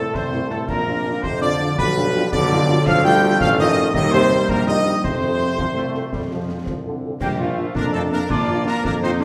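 A clear, roomy recital-hall sound carries this spirited, proud military-style march for wind band in 6/8 at 110 BPM in Bb major, where a clear trumpet section with light vibrato leads the melody over a bright woodwind section, a mellow euphonium and a soft-attack wooden piccolo in the background, a distant, very quiet French horn section, sustained trombone chords, a vintage-toned tuba bass and concert snare, bass drum and dark clash cymbals entering at 0.1 seconds, all cut from a longer piece that reaches a new section at 7.2 seconds.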